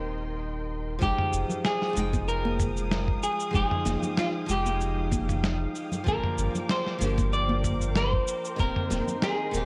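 A lightly swung 95 BPM groove in 4/4 carries this wistful sunset chillout excerpt in F dorian, where a dark, clean semi-hollow electric guitar sings the melody up front through digital delay and shimmer reverb over bright, fingerpicked flamenco guitar with audible finger squeak and a filter sweep in its opening second, veiled con sordino strings holding distant sustained chords that move from Eb6 through Fm9 and Gm7, and a round sine sub bass, while a gritty, dusty sampler-style kit with cabasa, snare and toms plus a thumpy electronic kick arrive at 1.0 s, joined by high-tuned, hard-handed congas at 1.5 s, the whole mix set in a lush hall with worn cassette-tape warble and pitch drift.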